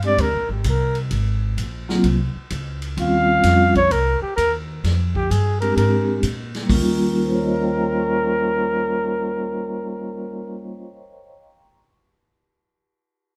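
Small-group swing and bop jazz, relaxed and warm, swinging at 129 BPM in 4/4 around Eb mixolydian, in a short passage cut from a longer piece. A warm flugelhorn carries the melody up front from 0.1 seconds, close-miked with vibrato in a jazz solo voice. A vibraphone played with medium mallets supplies metallic, ringing accompaniment with a fast motor vibrato, running to 12.0 seconds after the others have finished. Pizzicato upright bass on gut strings sounds woody and thumpy close in the mix, while a big-band drum kit of hi-hat, kick, ride and snare sits distant and roomy, with a boomy kick and a rolled-off top, dropping out at 6.8 seconds. The harmony moves through Bb13, Abadd9 and Eb13 chords, arriving on Eb13 as a second section begins at 6.7 seconds, all under a light reverb.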